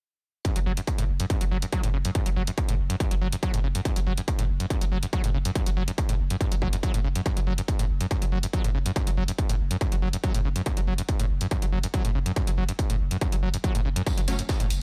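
A squelchy, resonant acid line, an up-front, layered electronic kick and an overdriven electronic hi-hat open this driving, industrial peak-time techno excerpt together at 0.4 s, with a thick, saturated sub bass pumping beneath from 0.6 s. A distant, brushed tambourine and snare drum arrive at 14.1 s, and a bright, warbling rave stab flashes at 14.3 s, all within a mostly dry mix.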